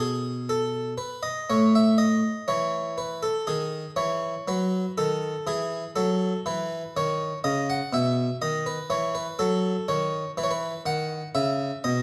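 Classical, baroque-style suite movement for solo harpsichord in E major, moving at an unhurried 61 BPM in 3/4 with a flexible, rubato feel that gives this short passage, cut from a longer piece, a serene yet dance-like character. The plucked, French-style harpsichord sits up front with a round, warm tone from a single set of strings, ranging from A2 to F#5 across the full 12 seconds. Its harmony drifts through colorful chords such as Amaj9#11 and D#m7b5 before settling toward B, all framed by a moderate recital hall reverb.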